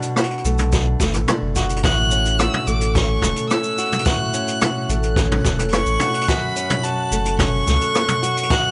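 A straight 4/4 groove at 108 BPM opens this delicate, wistful folktronica excerpt, with a boxy, fingerpicked flamenco guitar playing arpeggios with audible finger squeak over a brushed jazz kit of cabasa, hi-hat, rim click and toms, joined at 0.4 s by a round sine sub bass and at 0.7 s by a boomy, rolled-off kick drum, while a rich, focused solo violin sings a bowed, vibrato melody from 1.8 s over A6 and F#m, and a reversed, detuned granular texture swells dreamily in the background from 3.3 s, all in light reverb.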